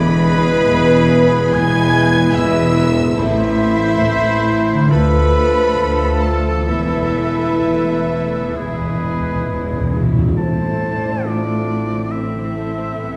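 A wet recital-hall reverb surrounds this short cut from a slow, rubato romantic orchestral movement in A minor, moving at 63-75 BPM with a melancholic, solemn air. A lush, intense violin section carries the melody with vibrato from a distance, while a second, very quiet violin section, focused and rich, joins clarinet, a close-miked oboe and an airy, hollow silver flute in weaving second lines. Beneath them a mellow, roomy French horn section holds soft-edged chords, a dark bassoon and a gentle trumpet add accompaniment and stabs until 10.0 seconds, and a very quiet, ringing harp plays fingerpicked arpeggios. Smooth cellos and distant double basses anchor the bass, with a very quiet viola section entering at 0.3 seconds. Timpani struck with hard mallets sound close and dry from 3.2 seconds, leading into a fill from 8.6 seconds as the harmony moves from E through Am, Dm and Esus4 back to E before settling on A minor at the start of a new section at 10.4 seconds.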